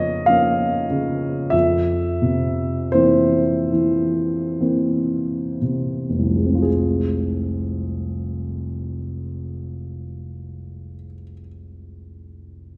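This classical romantic nocturne for solo piano carries a yearning, mournful mood, moving in a triple metre with a free, rubato feel. A single upright piano plays throughout, its tone warm and woody and placed up front, reaching from F1 to F5. The opening phrase slows down through its first 6.7 seconds, moving from Bbm/F to C7/F before settling onto Fm as a new passage begins. The piano sits in a wet recital-hall reverb that gives the church or concert-hall space a lingering tail. As a short excerpt cut from a longer piece, it stops at 12.8 seconds.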